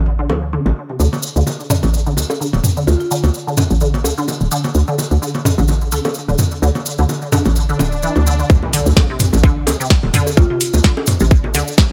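Swung 16ths drive this hypnotic, quirky minimal techno cut in D minor at 128 BPM, where a hollow, bouncy FM bass pumps under a squelchy, nasal blip pluck riff that carries a filter sweep, phaser, chorus and dub echo, while overdriven electronic bongos and toms and a grainy, distant cabasa fill out the groove. A buzzing, woody marimba sounds briefly at 2.9 seconds, and a background swell builds from 7.7 seconds into a drop at 8.5 seconds, where a tight, up-front kick arrives alongside an impact, followed moments later by a booming analog drum machine with crisp snare and metallic, filtered hats. The mix is dry, with little reverb, and it is cut from a longer piece.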